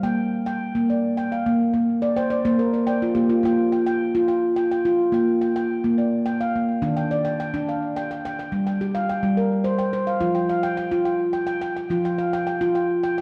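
Calm and gentle, this short cut from a longer world piece has a meditative stillness, moving at 106 BPM in a straight 3/4 and settling in B-flat major. A solo handpan carries the whole 13.2 seconds, played with soft fingertips that draw a mellow, ringing tone from its nitrided steel, reaching from Eb3 up to G5. Sitting up front, the instrument sounds airy and soft, with a tape echo trailing its notes, and a brief fill arrives between 2.0 and 3.4 seconds. The harmony drifts from Bb through Gm7/Bb and back, then shifts at 6.8 seconds into a second passage that moves through Eb and Gm before resting on Fsus2. A wet scoring-stage reverb and a touch of small-room ambience surround the playing, giving the dark, warm production a spacious glow.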